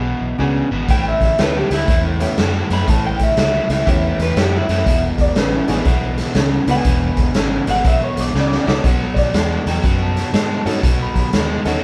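A swung electric blues shuffle at 121 BPM in E mixolydian rolls along over an E7 to A7 change, back to E7 and on to B7, driven by an up-front overdriven guitar riff and a round, foam-muted fingered electric bass, with a jangly, metallic tack piano joining in the background at 0.4 s. A gritty, saturated garage drum kit with a punchy kick comes in at 0.9 s alongside a slightly broken-up, lo-fi lead guitar melody through a small old amp, and a drum fill at 8.3 s leads into the B7. A woody, mellow upright piano adds a second line from 5.2 s, giving this soulful, rollicking cut the feel of a band playing live in one room with moderate reverb.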